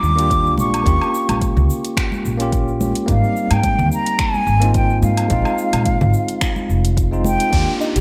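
A lightly swung sixteenth-note groove in 4/4 carries this sunny, blissful sunset chillout excerpt, built from an overdriven deep house kit of finger snaps, metallic hats, shaker and woodblock with gated reverb, a deep layered electronic kick, and close, dry congas played with hard hands in the background. Over a woody pizzicato upright bass and a bell-like, clean tine electric piano moving through Ebmaj7, Abmaj7 and Bb7sus4, an airy, hollow concert flute carries the melody with vibrato, a soft attack and a touch of delay. At 7.5 s a dark, round, chorused pluck arpeggio and an electronic downlifter arrive, all set in moderate plate reverb with a bright 1980s-style digital sheen.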